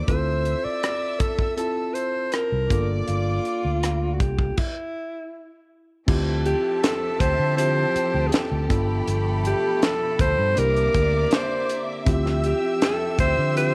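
A straight 4/4 groove from a tight funk drum kit, with its high-tuned snare, and a punchy fingered electric bass sits up front in this smooth, cinematic slice of lush 1970s-style soul, cut from a longer piece. A mellow tine electric piano and an intimate, sul tasto chamber violin section fill in behind a warm, jazz-style alto saxophone melody with vibrato. After a stop from 4.6 to 6.1 seconds, a rich studio string section enters with sustained chords over extended harmony, all set in moderate spring reverb.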